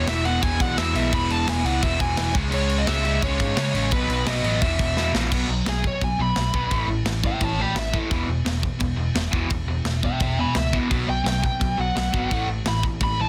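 Rowdy and energetic, this short punk rock excerpt in E major charges along at 172 BPM, with crunchy, double-tracked overdriven rhythm guitar riffing up front over growly, punchy picked bass and a tight, mid-forward drum kit of crash, kick and snare. A bluesy, distorted lead guitar carries the melody from the outset, and the drum fill at 5.0 seconds launches it into a solo from 5.3 seconds, all in a dense, heavily limited mix with little reverb.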